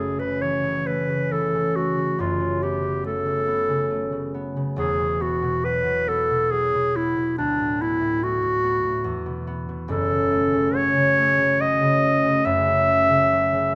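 Clarinet and concert harp begin together in this impressionist classical duo, a short passage cut from a longer piece in F# minor. The clarinet carries the melody up front with a clear, classical-style tone, moving between D4 and E5, while the fingerpicked harp supports it with ringing accompaniment that reaches from a deep E1 up to C#5. The mood is wistful and mysterious, set in a slow 3/4 at 70 BPM with a flexible, rubato feel. The harmony drifts through colored chords, opening on F#m7 and passing through Esus2 and D6 before settling on F#m6 near 9.9 seconds. A moderate recital hall reverb surrounds the pair, and close, detailed microphones keep both instruments present until they end just before 14 seconds.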